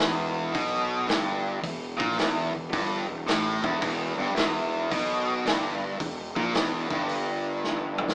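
A swung 110 BPM groove in 4/4 drives this brooding, gritty blues rock and southern rock power-trio fragment in E minor, where a bright, double-tracked overdriven stack guitar riff and a growly fuzz bass sit over an up-front vintage drum kit with a tight kick and rolled-off top, all played live in one room with wet studio reverb and a small-speaker sound, ending on a drum fill at 7.6 seconds.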